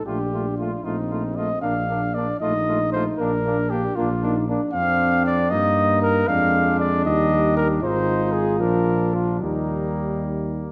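Stately and triumphant, this brass quintet excerpt moves in a rubato 6/8 at 77 BPM, starting in Bb major and shifting to Eb major from 4.7 s. A dark, close-miked cornet carries the melody up front, while a mellow, punchy trumpet adds a distant second line and a French horn with light vibrato and a clear trombone sit in the background as accompaniment. A soft-attacked tuba anchors the bass up front, all set in a moderate scoring-stage reverb that lends the cut-off passage a roomy, ceremonial glow.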